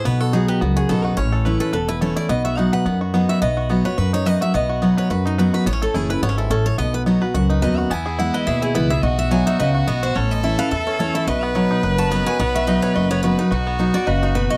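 Rustic and virtuosic, this fast bluegrass cut swings its eighth notes with a brisk 4/4 drive, taken from a longer piece. A picked steel-string acoustic guitar carries the lead as a solo throughout, its bright, full-bodied dreadnought tone ringing clearly. Underneath, a second picked acoustic guitar, sitting up front with audible finger squeak, picks out the accompaniment, while a twangy, percussive banjo played with fingerpicks adds its own melodic line and a woody pizzicato upright bass anchors the low end. At 7.9 seconds, as the section repeats, a clear, focused fiddle joins with a boxy, lightly vibratoed second line. The sound is a dry, close 1970s-style studio recording with only light reverb, and the harmony circles mostly between B and A, touching E once.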